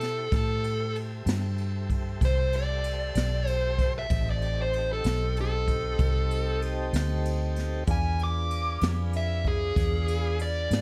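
A dark, lightly reverberant production frames this mournful, soulful slow blues in 12/8, cut from a longer piece and moving from Am9 through Am9b5 to E7b9. Up front, a smooth, overdriven, picked electric lead guitar carries the melody, while a round, punchy, foam-muted fingered bass anchors the low end. Behind them, a warm, clean tonewheel organ holds sustained chords through a slow rotary speaker, and a brushed acoustic jazz kit in a small room adds a boomy kick, a high-tuned snare and a shadowy ride cymbal.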